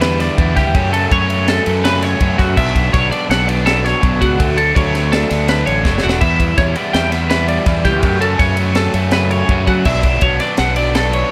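Math rock with a midwest emo lean, this bright, wistful excerpt moves at 164 BPM in 5/4 through chords like Em7, F#m, Bmadd9 and Dmaj7, with a twangy twelve-string electric guitar spinning arpeggios through lush chorus while a second, very quiet twelve-string adds accompaniment only in the first 0.7 seconds. An overdriven, double-tracked electric guitar drives the riff up front beside a growling fingered bass with its own overdrive, and a crisp fusion kit with a high-tuned snare, tight kick, ride and crash marks a short fill at 5.9 seconds. The mix is dry and polished, with the drums sounding airy in a studio room.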